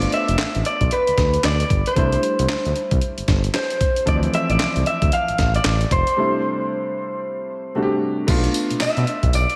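This excerpt rides a swung sixteenth-note groove at 114 BPM in 4/4, a punchy, slick slice of new jack swing R&B heard in a big arena-like space with a lush, wet hall reverb. A compressed, sampler-style breakbeat kit sits up front with a thumpy kick, a high-tuned snare, handclaps, hi-hat, tambourine and crash cymbal, its gritty, tape-warm grain giving the beat its bite. Underneath, a smooth synth bass blending sawtooth and triangle tones holds sustained notes with a fast attack, while a clear concert grand piano adds accompaniment with a deep low end and short sustain, touched by slapback echo. Carrying the melody, an up-front electric guitar on the edge of break-up is picked and compressed, with digital delay and slapback echo thickening its slightly broken-up tone. The harmony moves from a rootless G7 through C6 and Dm7 back to C6, with a break from 6.2 to 8.3 seconds before a new section opens on Bm7b5 at 8.3 seconds.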